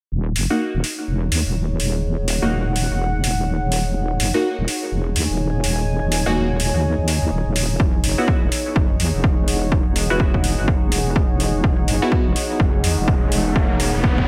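Swung 16ths at 125 BPM drive this swaggering, bouncy bass house excerpt in Eb phrygian, where a heavy, saturated sawtooth wobble bass and a nostalgic, lo-fi warbling pad pump under sidechain from the start, metallic overdriven hi-hats tick in at 0.4 seconds, joined at 0.5 seconds by nasal, band-passed chord stabs colored by phaser and tape echo, and a punchy overdriven kick lands up front at 7.8 seconds as the harmony moves from Ebm to Esus2 before an electronic riser builds from 12.5 seconds, all in light reverb.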